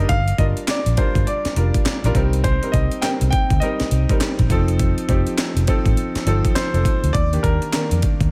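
A swung sixteenth-note groove at 102 BPM in 4/4 drives this punchy, confident slice of new jack swing R&B, cut from a longer piece. A breakbeat sampler-style drum kit enters at 0.1 seconds with handclaps, hi-hat, a thumpy kick and a medium-tuned snare, its gritty, overdriven sound sitting up front with gated reverb and the character of a small room. Beneath it, a vintage muted fingered electric bass holds the low end from F1 to F2, dark, round and foam-muted. A smooth, vintage grand piano supplies accompaniment across the middle register, while a polished baby grand carries the melody between Bb4 and G5 in a clear, present tone until 8.0 seconds. The harmony moves through Gm7, Cm7 and F7 before landing on Ebmaj7 at 7.1 seconds, all set in a digital ambience.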